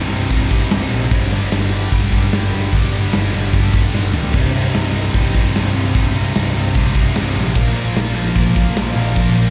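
A driving, menacing hard rock excerpt in C minor at 149 BPM opens with three bright, picked guitar riffs sitting in the background: one distorted and compressed, one overdriven with slapback echo, and a double-tracked high-gain guitar with distortion and slapback echo, all over a growly, punchy picked electric bass. A big acoustic rock kit enters at 0.3 s, up front with a punchy kick, medium-tuned snare, hi-hat, crash and toms in a bright stone room, and it plays a fill at 3.9 s as the chords move from C minor through G and back to C minor before landing on Bb. The whole thing has the feel of a live gig heard through the venue's PA, carrying small room ambience and recital hall reverb.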